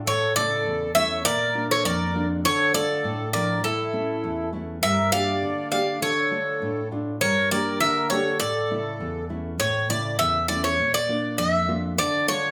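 Greek folk from a bouzouki band, a brooding, bittersweet 2/4 fragment cut from a longer piece that moves through A, Bb, Dm and Gm chords. Up front, a bright, metallic bouzouki with double and some octave-doubled strings carries the picked melody over a fingerpicked nylon-string guitar whose fresh strings give a full-bodied, deep classical tone, while a reedy, sweet accordion with light tremolo tuning adds a smooth second line until 9.3 seconds. The players sound live together in one room, wrapped in a wet, large studio reverb.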